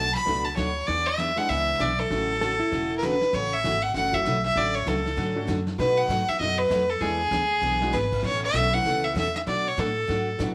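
Country western swing at 196 BPM in A major, cheerful and playful with a swung eighth-note feel, led by an up-front bowed fiddle with light vibrato and an earthy tone. Beneath it sit a bright picked dreadnought acoustic guitar with finger squeak, a thumpy pizzicato upright bass on gut strings, a smooth brushed drum kit with dark cymbals, and a natural-sounding upright piano with long sustain, both drums and piano kept in the background. A clean, compressed lap steel slide line appears briefly from 2.4 to 3.2 seconds, and a drum fill lands at 7.6 seconds in this small-room cut from a longer piece.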